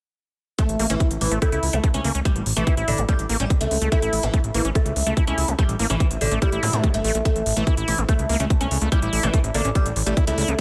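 A dry sound with little reverb frames this hypnotic, alien psychedelic trance excerpt, cut from a longer piece and moving at 144 BPM in 4/4 with a straight feel in A major. The tight, tape-warm electronic kick sits up front with crisp electronic hi-hats, both layered and re-recorded in a large room, while a fat, saturated sawtooth bass with tube saturation and a filter sweep holds the low end from G1 to A2. Over it, an overdriven acid bass riff adds squelchy, resonant grit with vintage 12-bit sampler crunch, sidechain pumping and tape echo. A plectrum-plucked, fretless oud carries the melody between D3 and C#4, its woody double strings coloured by phaser, pumping and tape echo. From 3.2 seconds a very quiet, moody, detuned pad with ring modulation and chorus drifts in, and a faint electronic zap flickers at 6.6 seconds.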